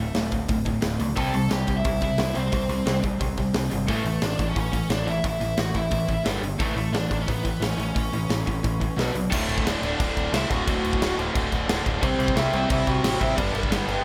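A rowdy, upbeat punk rock excerpt at 177 BPM in straight 4/4 opens with two rhythm guitars, a growling picked bass and a lead guitar sounding at once, with a big acoustic rock kit joining at 0.1 s. One rhythm guitar is picked and overdriven, while the other is distorted and compressed and sits in the background. Both play riffs, and the bass underneath adds its own overdrive with a direct-and-amped bite. The lead guitar, run through a small cranked amp, carries the melody with a warm, driven tone dressed in plate reverb and digital delay. The drums sit up front with a punchy kick, a medium-tuned snare, hi-hat and crash cymbals in a big room, and the first guitar, the bass and the cymbals all share a bright edge. The chords move through D5, C, A and G5, and at 9.3 s a second section settles into D mixolydian over D, C and G until the cut at 14.0 s, all within a moderate studio ambience.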